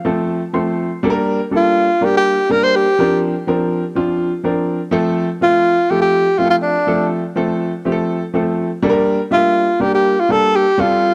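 A breathy, dark tenor saxophone carries the jazz-style solo melody from 1.6 seconds, its subtoned, whispered tone and scooped notes sitting intimate and up front over a warm baby grand piano that opens with a brief fill and then accompanies with natural, short-sustained chords moving through F, G minor and B-flat add nine, all in a joyful, danceable soul excerpt at 123 BPM with light reverb.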